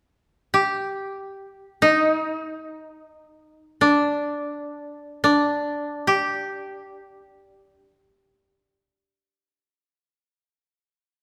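A moderate scoring-stage reverb gives this short excerpt of Japanese traditional chamber music an open, resonant space, while the solo koto sits up front with a bright, woody, dry tone plucked with fingerpicks. Austere and solitary in mood, the koto plays alone in free time within a narrow middle register, entering at 0.5 seconds and falling silent at 8.9 seconds as the room carries its final notes.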